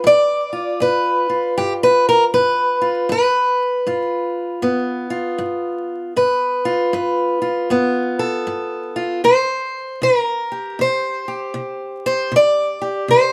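A bright, boxy parlour steel-string acoustic guitar with fresh strings carries this swaggering, rollicking acoustic country blues excerpt alone, fingerpicked up front at 78 BPM with a swung 4/4 feel in G mixolydian, its finger squeaks audible as it rides a G7 chord before moving to C5 at 9.2 seconds, all set in a moderate studio reverb under a layer of vinyl crackle.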